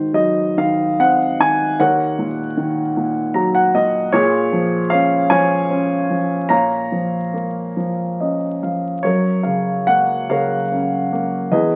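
Heard through the crackle of a very old 78 rpm record and a moderate studio reverb, this short fragment of a longer classical piece sets a lone concert grand piano up front in the sound. The mood is tender and calm, in a lyrical 6/8 that moves at roughly 46-51 dotted-quarter beats per minute with a free, rubato feel. The piano's tone is dark and mellow, reaching from a deep bass at Eb2 up to Bb5. Its harmony drifts from Ab7 through Ebm7 and Bbm7 to Bbmadd11, with brief fills around 3.0 and 7.8 seconds. At 9.0 seconds the music turns to a new passage on F# before the fragment ends at 11.8 seconds.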